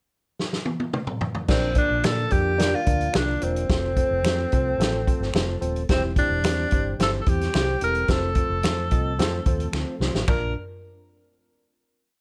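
Uptempo 1960s-style soul in Bb major at 109 BPM, uplifting and danceable, opening with a drum fill from the vintage kit before a tenor saxophone takes the lead at 1.5 seconds with a clear, forceful, jazz-style melody built on song-like motifs, full of vibrato and scooped notes and carried on a slapback echo. Beneath it, a punchy kick and fat snare drive a soul beat with the snare on all four beats, a dark, foam-muted fingered bass plays a syncopated line with slides and chromatic approach notes, a worn, slightly out-of-tune tine electric piano with analog chorus chops eighth-note chords in close voicing, and a very quiet, flute-like tonewheel organ holds a soft pad through a slow rotary speaker. Close, dry finger snaps join at 2.0 seconds, and after a second drum fill the piece settles on a final Bb chord at 10.3 seconds, all in light reverb.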